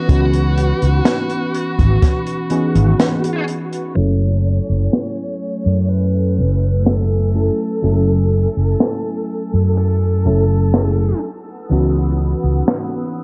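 A growly, up-front fretless electric bass with lush chorus anchors this woozy, melancholic vaporwave fragment at 62 BPM in F# dorian, moving from C#m11 to F#m9 at 4.0 seconds and back to C#m11 at 11.2 seconds. A soft, round FM electric piano and a thick, detuned sawtooth pad with chorus and phaser fill out the chords, while a distorted, high-gain lead guitar with tape echo carries the melody until 11.2 seconds. Underneath, a boomy kick drops out at 2.2 seconds, and an open jazz kit with a high-tuned snare and filtered hi-hat brings 12-bit sampler grit, all set in a small room with a dark, cassette-toned production.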